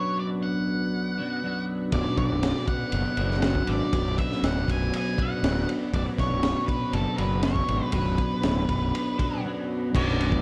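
Mysterious and hypnotic, this psychedelic rock excerpt at 120 BPM in B minor opens on a bright, twangy twelve-string electric guitar riff through a rotary speaker, a dark octave-fuzz lead guitar melody with distortion and analog delay, and reedy overdriven combo organ chords in the background, before a round, fuzzy fingered bass and a gritty, saturated breakbeat drum kit with dark cymbals and a high-tuned snare join at 1.9 seconds, all resting on a Bm chord in a light studio reverb.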